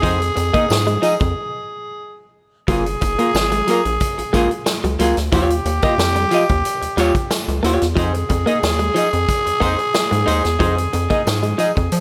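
Funky and sly, this 91 BPM funk excerpt sets a raspy, growling tenor saxophone's second line over an up-front hollow-body jazz guitar, a compressed clean electric guitar riff with analog chorus, a rubbery square-wave bass with a resonant filter pluck, a punchy acoustic big-band drum kit, and a jingly tambourine entering at 0.4 seconds in the background, moving through Fm7, Gbmaj9 and Eb9 with a break at 1.4 seconds.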